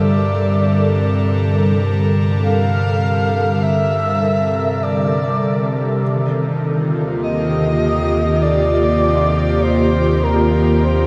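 In a straight, unhurried 4/4, this luminous, weightless ambient excerpt drifts from a Gmadd9 chord to Eb6 at 6.0 seconds, bathed in a huge, wet reverb. Up front, a breathy, flute-like synth lead sings the melody with vibrato, lush chorus and tape echo. Beside it, an airy pad holds soft, detuned sustained chords. Beneath, a deep, ominous, rumbling drone carries the bass with a vintage warble, and a tense, string-like bowed drone on C3 sits in the background. A felt-muted upright piano, mellow and intimate with audible action noise, traces barely audible arpeggios throughout.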